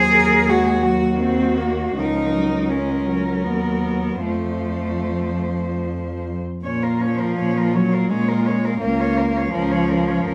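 Moving in a rubato 3/4 at about 73-85 BPM, this tender classical excerpt in Bb minor for four bowed cellos carries a distant, warm, expressive melody with vibrato and portamento over a smooth, rich second line and an even accompaniment, while the close, up-front bass cello sings with its own vibrato and portamento, the ensemble set in a stone room's reverb, with a new section arriving at 6.6 s.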